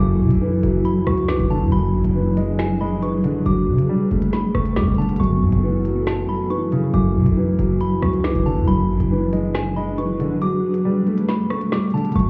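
A dark, worn grand piano sits up front with audible action noise alongside a punchy, hard-hitting 808-style bass in this menacing half-time drill excerpt at 138 BPM, while a delicate, tinkling chorused synth tine bell carries the melody, a blurred granular cloud pad drifts in the background, an electronic drill kit with woody snare, crisp hats, finger snaps and rim clicks enters at 0.3 seconds, the kick drops out at 10.4 seconds, and the whole mix sounds muffled through a wall with club reverb and vinyl crackle over chords moving from Dadd9/F# through E7/F#, Gadd9/F# and F#m7 to Gadd9.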